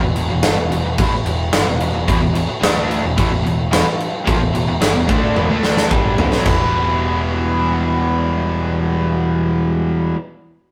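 Menacing and driving, this hard rock excerpt in E minor moves at 109 BPM on a straight 4/4 feel, with two distorted electric guitars, one bright and overdriven in the background and one tight and bright, grinding out riffs over a growling, overdriven picked bass while a very quiet, airy sawtooth pad sustains detuned chords behind them until 9.4 s. A huge, up-front arena drum kit with a punchy kick, medium-tuned snare, toms and crash cymbal enters at 0.2 s, rolls through a fill from 5.4 s and stops at 6.6 s. A third guitar, double-tracked and compressed with a warm overdriven tone, joins the riffing at 2.1 s, all captured as a rough rehearsal-room recording with tube saturation and moderate stone room reverb.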